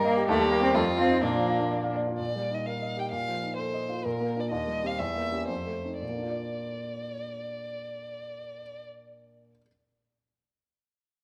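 Graceful and spirited, this quick classical-period excerpt for piano trio moves in a straight duple metre and eases into a slowdown between 3.6 and 6.0 seconds before settling on a home chord. The violin carries the expressive melody up front with vibrato and portamento, while a rich, distant cello offers a smooth second line that stops at 2.0 seconds. The baby grand piano supplies a natural, up-front accompaniment with short sustain, all set in a moderate recital hall ambience.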